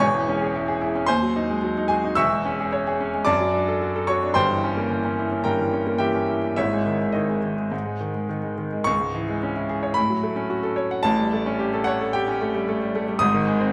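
Bathed in a recital hall's wet reverb, this stormy, passionate excerpt from a virtuoso classical piano study in C# minor moves at a rubato 110 BPM in 4/4, as a solo baby grand, clear, intimate and up front with audible action noise, ranges from E1 to E6, tuned to A4 = 441 Hz, shifting into a new section at 8.9 seconds before settling on G#.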